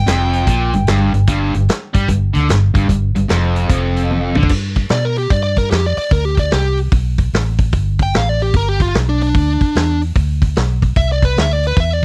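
Blues rock in the power-trio mold with a southern rock streak, this driving, raunchy cut from a longer piece moves at 149 BPM in 4/4 with a swung eighth-note feel, centered in G mixolydian. It opens with a bright, double-tracked distorted guitar riff over a chordless passage, joined by a round, foam-muted fingered bass and a vintage drum kit whose saturated, gritty sound carries dark cymbals, a medium-tuned snare and a tight kick. The distorted riff guitar drops out at 4.5 seconds, just after a drum fill, as the harmony lands on G and the smooth overdriven lead guitar, present from the start, takes a solo through the remainder of the clip. That lead has a warm, picked tone with a slapback echo and sits somewhat lower in level than the rhythm section, while the chords move to C at 11.0 seconds. The whole recording is dry and close, in the manner of a 1970s studio session, with every part placed up front.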